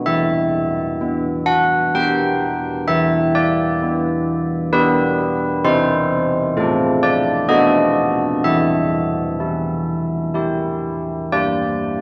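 Worn, warbling cassette tape gives this recording a drifting, unsteady pitch, and a wet church reverb lets each stroke hang in the air for more than three seconds. It is a solemn, wintry classical tune for church bells in E minor, moving slowly at 64 BPM in 3/4 with a straight feel and tuned to A4 = 438 Hz. A carillon plays alone throughout, sitting up front between E3 and G5, its bronze tone ringing with a minor-third overtone and the bite of a worn iron clapper. The harmony rests on E minor before turning through C, F over A and B7 at around 7.5 seconds, then settling back on E minor and closing on a G5 chord at 11.3 seconds. Cut from a longer piece, this 12-second fragment feels like a cold winter peal heard through an aged recording.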